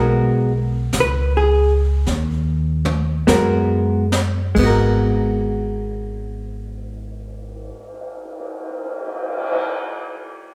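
A melancholic, intimate jazz ballad fragment in a slow swing, opening on a lush minor ninth chord voiced by a dark, clean, compressed hollow-body electric guitar that sits up front alongside a woody pizzicato upright bass, both playing until about 7.8 seconds. Brushes on a kit with dark cymbals, a high-tuned snare and a boomy kick enter at 0.9 seconds, adding a drum fill while the pace slows through the opening bars. The whole performance blooms in a reverberant hall, giving the small group a churchlike glow.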